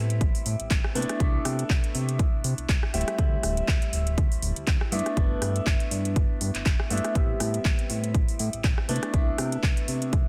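A punchy, up-front electronic kick with a touch of studio reverb drives this sunny, joyful filtered disco house piece in 4/4 with a light swing on the sixteenths, alongside a house kit of handclaps, rim clicks and metallic hi-hats that pump against the kick. A fat, saturated analog bass with a sawtooth edge and a plucky filter also pumps beneath a clear grand piano, whose long-sustaining chords are coloured by phaser and move through Am9, Cmaj13, D9sus4 and G6. The dense, heavily limited master keeps the room dry, and the clip is cut from a longer piece.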